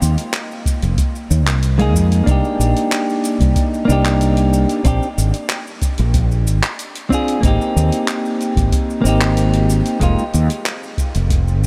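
A dreamy mix soaked in huge ambient reverb gives this relaxed, wistful sunset chillout excerpt its hazy glow, set in a straight 4/4 over chords moving from Fm7 through Cm9, Bb7 and Abmaj7 back to Fm7. A punchy, up-front fretless electric bass with analog chorus anchors the low end. An overdriven deep house kit of handclaps, hi-hat and shaker, re-recorded in a small room, sits low in the mix, and a deep, tape-warm electronic kick enters at 0.7 seconds. From 1.8 to 10.2 seconds a clean, picked and compressed electric guitar comes forward, trailed by tape echo and shimmer reverb.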